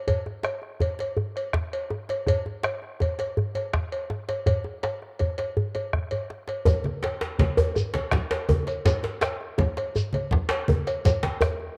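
Festive and driving, this West African drum ensemble excerpt in 12/8 opens with a round, dry bombo, a metallic, up-front cowbell and a tight, cracking djembe played with soft hands, then after a drum fill at 5.9 seconds a second djembe carrying metal rattles joins at 6.7 seconds alongside bright, low-tuned congas and a grainy, compressed shekere, the whole performance captured as a home cassette recording with light reverb and studio ambience.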